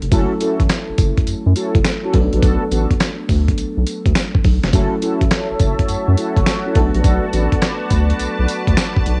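A gritty, up-front sampler-style drum kit with a thumpy kick, medium-tuned snare, hi-hat and tambourine opens this short, confident new jack swing cut at 104 BPM. A deep, round analog bass and a glassy, bell-like FM electric piano with a chorused, tape-worn shimmer sound alongside it from the very first beat. The groove swings its sixteenths in 4/4 over a slick two-chord vamp that alternates between F#m7 and Bm7. Mellow, detuned synth brass stabs arrive almost at once, dark and chorused with vibrato and an analog delay trailing behind them, and they drop out at 7.5 seconds. From 4.7 seconds a bright, evolving resonant pad fades in slowly with sustained chords and a filter swell, sitting higher than the other parts. The whole piece has the lo-fi, softened top end of a home cassette recording, set in a digital ambience.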